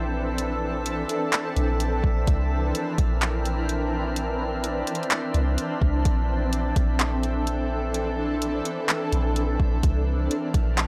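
A shimmering ambient pad with an octave-up sparkle sits up front, holding slow-blooming chords through chorus and reverb while sidechain pumping gives it a gentle breathing motion over Bbmaj9#11 and C9 in Bb lydian. Beneath it, a deep, round 808-style bass anchors the low end, and from 0.4 s a smooth, tape-warm R&B kit of soft kick, warm hats and handclaps sets a half-time feel at 127 BPM. A drifting glass-harmonics texture floats bright, calm overtones higher up, giving this dreamy cloud-rap fragment a floating mood within a dry, gritty, digitally ambient recording.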